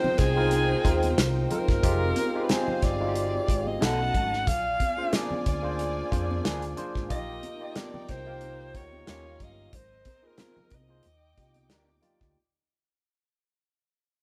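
Romantic and smooth, this lush 1970s-style soul piece in Eb major moves at 91 BPM with a light sixteenth-note swing, fading out across its 12.4 seconds as a clip from a longer performance. A clear, up-front alto saxophone with vibrato carries the jazz-style melody over bowed, lush studio strings, a barky, bell-like tine electric piano lightly overdriven through a combo amp, a round, dark hollow-body bass, and a dry, damped drum kit with a tight kick and medium-tuned snare. Bright high-tuned congas, a slightly broken-up, picked guitar riff from 2.5 seconds, and brief mellow vibraphone touches at 1.5 and 6.1 seconds sit in the background, with the band playing live together in a moderately reverberant stone room.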